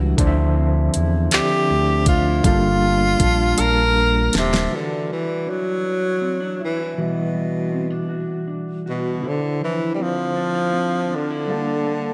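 Bright 1980s-style digital production and a lush hall reverb frame this late-night, sultry slow R&B excerpt in six-eight. A breathy, close-miked tenor saxophone with vibrato carries the jazz-style melody up front from 1.3 seconds, over a barky, overdriven tine electric piano with fast tremolo and a dark, clean electric guitar in the background, treated with chorus and digital delay. A gliding sawtooth synth bass and an electronic drum kit with knocking kick, fat snare, metallic hats and handclaps anchor the opening until 4.7 seconds, the drums ending on a fill, after which saxophone, piano and guitar continue over rich ninth chords.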